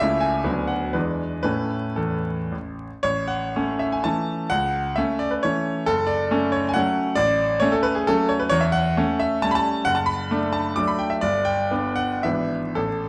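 Dotted rhythms drive this romantic classical dance in triple time, played with a flexible, rubato feel that gives it a proud, rustic swagger. A solo grand piano carries the whole fragment from 0.0 to 13.1 s, covering a broad register from deep bass notes to sparkling upper tones. The instrument sounds brilliant and polished yet intimate, sitting up front with a long sustain, and the clatter of its action can be heard beneath the notes. The opening phrase lasts until about 3.0 s, after which the same idea returns and, from around 8.5 s, the harmony turns toward new chords before the clip cuts off mid-piece. A moderate recital-hall reverb surrounds the playing, while the overall production is dark and mellow, with a faint vinyl crackle giving it an aged, nostalgic patina.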